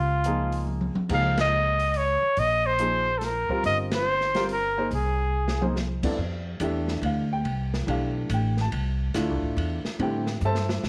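This modal jazz excerpt in a swung 3/4 carries a spiritual, searching mood. A breathy trumpet leads up front with a vibrato-tinged solo melody, colored by slapback echo, until it drops out at 5.7 s. Beneath it, a woody pizzicato upright bass on steel strings sits close, while a vintage upright piano with short sustain supplies smooth accompaniment. An acoustic kit recorded in a small room, dark with a boomy kick, dark cymbals and a rolled-off top, adds fills, and band accents punctuate the opening bars. The harmony moves from Dbadd9 through Eb and Cm(b13) before settling onto Fmaj9 at 6.2 s and then Am, set in light reverb and studio ambience.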